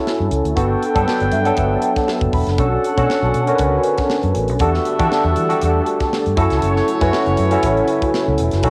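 Slick and bittersweet, this short excerpt of polished 1980s jazz-funk pop moves at 119 BPM in 4/4 with a light swing on the sixteenths. A barky tine electric piano leads the accompaniment up front, lightly overdriven through a combo amp with an ensemble chorus, and it plays a fill between 1.1 and 2.6 seconds. Beneath it, a tight funk drum kit with a medium-tuned snare and tight kick sits mid-forward in a small room, while a dark, foam-muted fingered electric bass adds a round, amped low end. A distant, roomy horn section plays a jazz-style second line, and at 2.6 seconds a very quiet string machine enters with silky, slow-attack sustained chords. The harmony drifts from F#m7 through Gmaj9, Bm9 and Em11 before returning to F#m7, all captured as a home recording on cassette in a snug booth.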